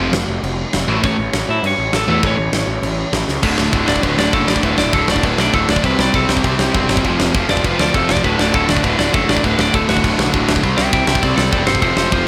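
Lightly reverberant and punchy, this upbeat, energetic punk rock excerpt charges along at 200 BPM in 4/4, opening in half time over F5 and A before a drum fill at 3.3 seconds kicks into full speed. A biting, overdriven guitar riff sits up front beside a very quiet, bright distorted second guitar, while a growly fuzz bass and a big-room acoustic kit with a fat snare and punchy kick drive the low end. From 3.4 seconds a compressed, slightly broken-up lead guitar takes a solo over chords moving through D5, C5, F5, D and C.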